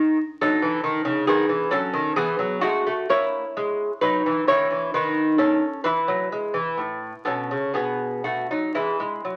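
Dance-like and flowing, this brief fragment of a baroque-style classical dance in E major moves in a rubato 3/4 at roughly 59-69 BPM, its harmony passing from B7 through F#7 and A before settling on E at 8.8 seconds. A solo lute carries everything from start to finish, fingerpicked with a bright, delicate touch on nylon double strings, some doubled at the octave, and it sits up front across a range from A2 to C#5. The sound comes through a wet studio reverb and the crackle of a very old 78 rpm record, lending the performance an antique, faded patina.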